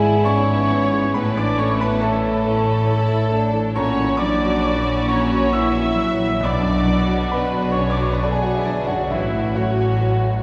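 Classical excerpt in F# minor, tragic and passionate, moving slowly and freely at 45 BPM in 12/8, where a clear, deep-bassed grand piano sits up front carrying the melody with a soft, floating violin section in the background, while a straight-toned flute and a rich, intimate second violin section add a second line, a viola section accompanies, a mellow French horn section holds sustained chords, and a dark double bass section joins the cellos on the bass line, all bowed sul tasto strings, as chords pass from E7/G# through A, F#7/A# and Bm to F#m/A in a wet concert hall heard from further back.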